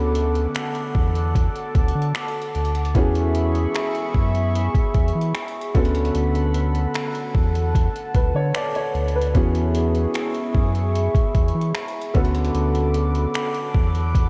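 A clear, boxy baby grand piano with lush chorus, a shimmering, retro pulse-width pad pumping under sidechain, a round, deep analog bass and a barely audible downlifter (ending by 2.9 s) open this tender, romantic contemporary R&B excerpt at 75 BPM in E mixolydian, joined at 0.1 s by an up-front, detuned 8-bit drum machine with a thumpy kick, hi-hat and finger snaps, all moving between Bm7/D and E6 in a dreamy, reverb-soaked, cassette-tinged mix.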